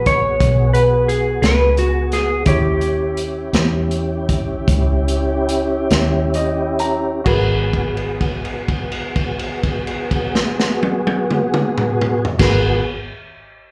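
A clean lap steel guitar carries the melody in this brooding, soulful slow blues in G# minor, its dark slide tone sitting between F#4 and C#5 with a slapback echo. Set in 12/8 at a straight 42-59 BPM, the excerpt moves from G#m7 to D#7b9 and back to G#m7, slowing down from 1.1 to 7.3 seconds, where a woody, boxy upright piano fill leads into the second section and a held note lasting until 12.4 seconds. The piano supplies short-sustain accompaniment with its own slapback echo, while a tonewheel organ holds clear chords through a slow rotary speaker with light overdrive, chorus vibrato and audible key click. Underneath, a vintage foam-muted fingered electric bass plays round, amped lines up front, and a crunchy breakbeat drum kit, saturated and gritty with dark cymbals, a tight kick and a rolled-off top, enters at 0.1 seconds. The whole performance is heard as a live gig through the venue's PA, with light club reverb and a brief, cut-from-a-longer-piece feel.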